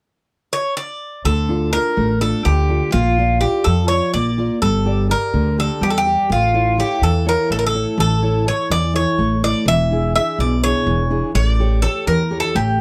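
A bright, metallic Greek bouzouki opens at 0.5 seconds, its picked double strings, some doubled at the octave, ringing up front in a tense, driving Greek folk tune in D harmonic minor. The upright bass joins at 1.2 seconds with woody pizzicato on steel strings, and a fingerpicked steel-string dreadnought acoustic guitar follows at 1.3 seconds, full-bodied and warm, with audible finger squeak. The band moves in a quick 7/8 at 250 eighth-note beats per minute with a straight feel, while the harmony passes from Dm through Bb and Gm to A, then presses toward E7 and A7. The bouzouki carries the melody above the guitar's accompaniment and the bass's low line. The sound is a dry, close 1970s-style studio recording with light reverb, cut from a longer piece.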